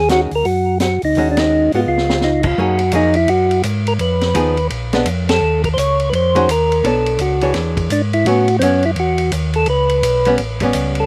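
A fast swung 4/4 at 169 BPM drives this soulful, smoky soul jazz organ trio fragment, with band accents at 1.3 and 5.2 seconds and a short drum fill just before the shift into a new section at 2.6 seconds. A percussive tonewheel organ carries the melody up front through a slow rotary speaker, its round, third-harmonic percussion tone sitting over a mellow organ bass with audible key click from a stationary speaker. A clean, compressed hollow-body archtop guitar provides accompaniment behind them, while a vintage acoustic drum kit adds a punchy kick, high-tuned snare and dark cymbals with a rolled-off top, all in a dry, close sound as the chords move from Ebm11 through F#69 to A9.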